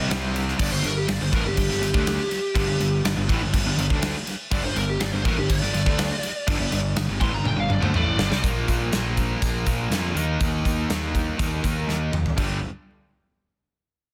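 Hard rock with a heavy, driving feel, built on a stack of overdriven riff guitars (a hollow-bodied semi-hollow part, a bright, tight distorted part, and a very quiet double-tracked raw garage guitar) over a fuzzy, punchy picked electric bass. A gated 80s drum kit sits up front with bright cymbals, a punchy kick and a soft-clipped snare in an airy stone room, adding fills at 7.5 and 11.9 seconds. A lead guitar through a small cranked amp carries a solo until 8.4 seconds, after which the garage guitar also drops out and the remaining parts drive on in a dense, heavily limited mix with little reverb.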